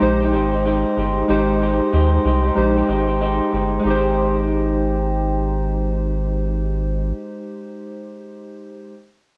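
Recorded at home on cassette with light reverb, this laid-back, nostalgic indie pop piece sits at a swung 94 BPM in Ab major on an Abmaj7 chord, built from a round, deep analog bass, a slightly broken-up, picked electric guitar through a small old amp bathed in lush chorus and vibrato, and warbling, detuned lo-fi synth keys with a filter sweep that carry on alone after the bass stops at 7.1 s and the guitar at 7.5 s, ringing out until 8.9 s.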